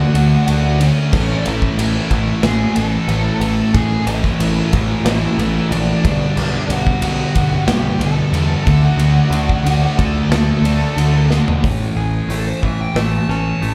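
Quiet-loud alternative rock at 91 BPM in a restless, cathartic mood, heard live through a club PA with moderate room reverb, as a short cut from a longer piece. A growling, round overdriven bass and a punchy acoustic kit with bright cymbals sit up front, while a thick fuzz guitar, a crunchy guitar and a very quiet, double-tracked overdriven guitar play riffs behind a dark, smooth lead melody coloured by slapback echo and delay. A drum fill at 11.3 s opens a lead guitar solo at 11.6 s, where a clean, twangy guitar adds phased arpeggios as the chords settle on Amaj7.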